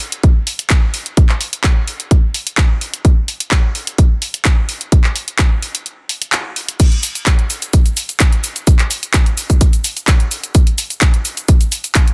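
Bittersweet and soulful, this straight-feel house excerpt in 4/4 is cut from a longer piece and built entirely from drums. A layered electronic house kit opens at 0.0 seconds with crash cymbal, handclaps, hi-hat and shaker, sitting up front with a tape-touched, small-room character. A punchy electronic kick joins at 0.2 seconds, standing louder than the kit and sharing its produced, re-recorded grain. A break arrives at 5.9 seconds before the drop lands at 6.8 seconds and carries through to the close. The sound is dry, with little reverb, and the master is dense and heavily limited in a modern way.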